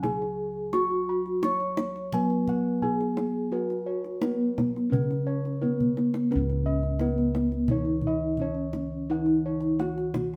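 In a straight 4/4 pulse, this serene, ceremonial Javanese gamelan fragment in slendro tuning sets a ringing bronze metallophone melody up front, struck with padded disc mallets, its paired tuning giving shimmering beats in a boxy small-room sound. A second soft, mellow metallophone carries the accompaniment below it, while bright bossed gongs play arpeggios and round, full bossed gongs hold the close-miked, dry bass line. A tight, closely heard kendang keeps time and plays a drum fill from 5.6 to 6.3 seconds, and the ensemble plays live together in one room with moderate reverb.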